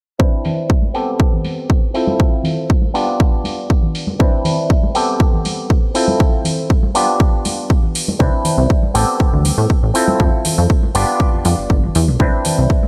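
Groovy and sensual, this filtered disco house excerpt at 120 BPM cycles through Cmaj9, Am9, Fmaj7 and G7 beneath a filter sweep, with an accompanying stringy, percussive auto-wah clav played clean through a combo amp with phaser, sidechain pumping and a low-pass filter, over a punchy, tape-warm electronic kick, metallic layered hi-hats, and hard-handed maracas and congas in a small room, until a plucky sawtooth-and-pulse analog bass with a fast attack and decaying filter pluck joins up front at 8.2 seconds, set in light reverb.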